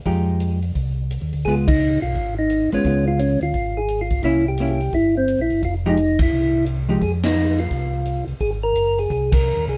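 A moderate room reverb surrounds a band playing live together in this smoky, bluesy soul jazz organ trio fragment, cut from a longer piece and swinging in 4/4. A round, dark tonewheel organ with chorus vibrato and slow rotary speaker carries the bass line. A clean, picked hollow-body electric guitar sits up front accompanying until 7.0 seconds, while an airy, polished big-band drum kit with a high-tuned snare and punchy kick plays hi-hat, kick, ride and snare. At 1.4 seconds a percussive tonewheel organ with third harmonic percussion and slow rotary speaker takes the melody, and the band hits shared accents over changes that move from Fm9 through Db7 and C7b9.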